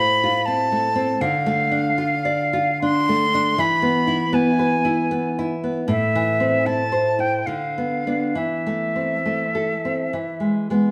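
This romantic duo for flute and classical guitar is a short fragment cut from a longer piece, moving in a rubato three-beat metre with a solemn, melancholic mood. The silver concert flute carries the melody in its upper register, its airy, metallic tone shaded with vibrato and a soft attack. Beneath it, the nylon-string guitar supplies a fingerpicked classical accompaniment with a warm acoustic body. Both instruments sit up front and were played live together in one stone room, whose reverb lends the pair a resonant glow. The harmony drifts through D minor and E toward A minor, then settles back onto E at 10.1 seconds, leaving the phrase unresolved as the flute stops at 10.6 seconds and the guitar at 10.9 seconds.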